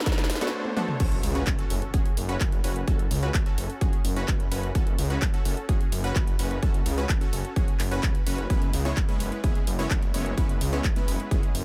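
Euphoric and anthemic, this festival progressive house excerpt in F# minor runs at 128 BPM in a straight 4/4, opening on a one-second build-up where a riser and noise sweep sit in the background over a drum fill, with a brief, very quiet bright grand piano touching in during the first 0.5 seconds. At 1.0 seconds the drop lands with an electronic impact, and a punchy, up-front layered kick drives the groove alongside a big-room kit of huge snare, metallic hats, handclaps, toms and crash. A detuned supersaw stab carries the riff with a fast-attack filter pluck, pumping against the kick and trailing dub echoes. Beneath it, a thick, menacing detuned saw bass, tube-saturated and high-passed, beats and pumps in the low register. The harmony moves from Bm7/F# to F#m on the drop, then shifts to C#m7/F# at 8.5 seconds, all in a dry sound with little reverb.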